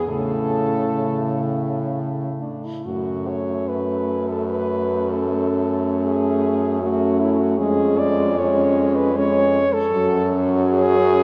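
Lyrical and warm, this classical passage for horn quartet is cut from a longer piece and unfolds in a flexible, rubato 3/4 at roughly 61-81 BPM in F# minor. A warm, close-miked French horn carries the melody up front with light vibrato, singing between D4 and D5 from the opening. Beneath it, a clear, distant horn with a roomy quality plays a second line, while a mellow, vintage-toned horn with a soft attack and light vibrato supplies the accompaniment in the middle register. Anchoring the group, another clear horn sits present and forward on the bass, with light vibrato in its low range. The harmony moves from A to F# minor at 2.9 seconds, passes through C#/E#, and returns to F# minor at 9.9 seconds. Everything is heard from further back in a wet cathedral space whose long reverb tail gives the quartet a spacious glow.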